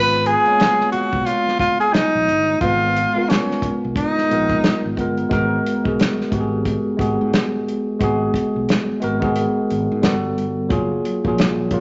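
A breathy tenor saxophone opens this sultry neo-soul R&B excerpt, close-miked and intimate, singing a whispered jazz-style solo melody with vibrato, soft attacks and scooped notes before falling away at 4.9 seconds. Beneath it, a bright, clean tine electric piano sounds through its built-in speakers, carrying the chords from G#m69 into G#m9 as the second section begins at 5.3 seconds, then shifting through Gmaj9 and F#maj9. A fretless electric bass, recorded direct and amped, holds down the low end with a warm tone, while a soul drum kit enters at 0.3 seconds with hi-hat, a tight kick and a medium-tuned snare, its dark, smooth small-room sound rolled off at the top. The groove sits at 89 BPM in 4/4 in G# dorian, with a gentle swing on the sixteenths. A wet, large studio reverb bathes the mix in a smooth, sultry haze.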